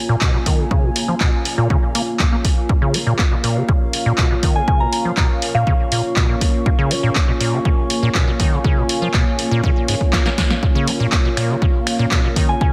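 A squelchy, resonant square-wave acid bass riff, carrying a filter sweep and digital delay, drives this hypnotic acid house excerpt, pushed along by a punchy electronic kick up front and an analog drum machine of finger snaps, handclaps, hi-hat and snare, with a drum fill at 10.1 seconds. Beneath them, a deep, detuned dark analog pad holds sustained Bb minor chords with chorus and sidechain pumping, while a warbling, nostalgic tape-like pad fades in far in the background with its own reverb. A soft, pure FM synth bell adds a brief melody with chorus and tape echo from 4.6 seconds, and the whole mix carries light reverb and a heavily compressed radio sound.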